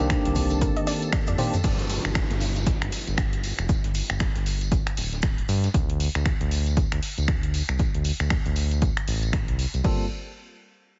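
A deep, round analog bass with tube saturation and sidechain pumping anchors this moody deep house excerpt at 117 BPM in G minor, driven by a punchy, tape-warm electronic kick, a layered house kit of crash, finger snaps, hi-hat and toms, and a jingly tambourine, with a very quiet, dark cocktail kit of hi-hat, shaker and high-tuned snare playing until 5.7 s; the opening bars carry a ringing hard-mallet vibraphone with delay, clean tine electric piano stabs, a silky string machine and a soft filter-plucked arpeggio with dub echo, before a downlifter enters at 1.6 s, set in a heavily compressed, radio-like small room sound.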